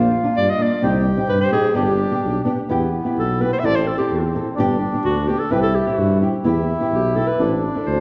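Klezmer in 2/4 at 128 BPM, soulful and festive, cut from a longer piece, with a mellow clarinet carrying the melody up front from 0.4 seconds in jazz style with vibrato, a dark tuba bass with light vibrato and scooped notes, a reedy accordion second line, and a small thumb-plucked nylon-string guitar accompaniment, all set in a recital hall's wet reverb over chords moving from Bb and Cm into E minor.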